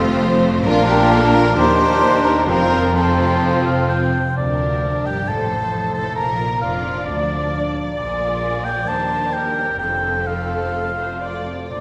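This excerpt from a longer classical piece opens with the full string body already sounding: a violin section carrying the melody with vibrato and expressive portamento, a second violin section and a lush viola section beneath it, and cello and double bass sections anchoring the low end. Over them a pure, hollow concert flute floats a high line until 3.9 s, while a ringing concert harp spins arpeggios in the background. At 0.7 s the winds join, with a roomy clarinet and a distant bassoon that both drop out at 4.1 s, a very quiet French horn section holding soft chords until 3.6 s, and a close-miked oboe that stays up front through to the end. At 131 BPM in 4/4 with a rubato feel, the music sits in Bb major and moves through Ebmaj7, F7/A and Bb7 harmonies, giving it a dramatic, restless character. A generous concert hall reverb with a 2.1-second decay wraps the ensemble in a spacious, lush glow.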